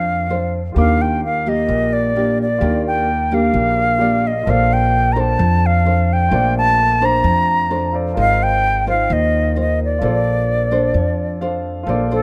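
A rough home demo with light reverb and small room ambience captures a breezy, relaxed bossa nova excerpt at 130 BPM in Bb major, where an airy silver concert flute carries the tongued, unsteady melody with vibrato up front beside a woody pizzicato upright bass, while a full-bodied fingerpicked nylon-string guitar supplies the accompaniment alongside a clear concert grand piano with long sustain sitting in the background, the piano adding a short fill at 11.2 seconds.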